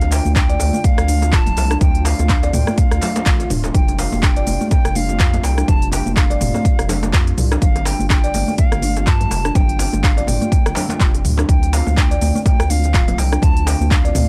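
An earthy, driving afro house excerpt at 124 BPM in D minor opens with a pure, vibrato-touched silver concert flute melody through analog delay, floating over a very quiet, detuned analog pad, a round, dark bass with sidechain pumping, a deep house kit of smooth hats, handclaps, rim click, shaker and toms, and a deep, vintage djembe. The up-front electronic kick lands at 0.4 s, while high-tuned congas ring in the background and a buzzing, woody kalimba plays delayed arpeggios that also pump with the sidechain. Swung 16ths and a gritty small-room sound with transformer saturation and cassette tape give the Dm, Fadd9, G5 and Dm7 changes a dry, hardware feel.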